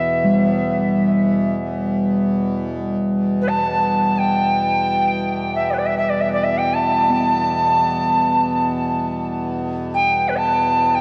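A reedy cedar flute carries an E minor pentatonic melody in free time from the first moment, crisp and chiffy with a delay trailing its notes, over a dark, breathing harmonium drone and the metallic ring of a bronze singing bowl with slow beating. This meditative, haunting world music sits in a huge, wet reverb, and the recording has the worn, warbling pitch drift of old cassette tape. The flute stays up front throughout the 11 seconds, a short passage cut from a longer piece, with the bowl a touch behind and the nasal harmonium lowest.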